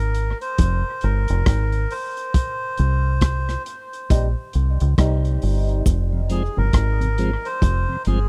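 A dry, close studio sound with a 1970s character frames this spacious, meditative dub reggae passage, cut from a longer piece. Up front, a deep fingered electric bass sits dark, round and foam-muted with transformer saturation, alongside a crunchy breakbeat drum kit whose tight kick, hi-hat and rim clicks come across gritty and saturated with a rolled-off top, all over a slow, swung 4/4 feel. A reedy, breathy melodica carries the melody through a dub echo, its nasal, airy tone hovering softly above the rhythm as the harmony moves between F minor and C minor. A muted trombone section enters at 4.1 seconds with a mellow, veiled cup-mute sound, light vibrato and a loose ensemble edge, also sent into dub echo. A brief cabasa touch at 5.9 seconds sits in the background, and from 6.1 seconds a piping, scooped tonewheel organ adds lightly overdriven accompaniment through a slow rotary speaker.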